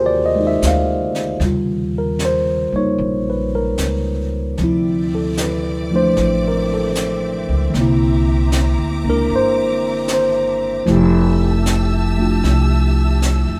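Dry and close, this tender, late-night jazz ballad excerpt in F major swings gently at 76 BPM: a worn, slightly out-of-tune tine electric piano sits up front through a combo amp, joined from the start by a woody, thumpy pizzicato upright bass on gut strings, while a brushed kit with a high-tuned snare enters at 0.6 seconds and a lush, bowed symphonic string section with soft-attack vibrato arrives at 4.6 seconds, as the chords move from Ab69 to a closing Fmaj9.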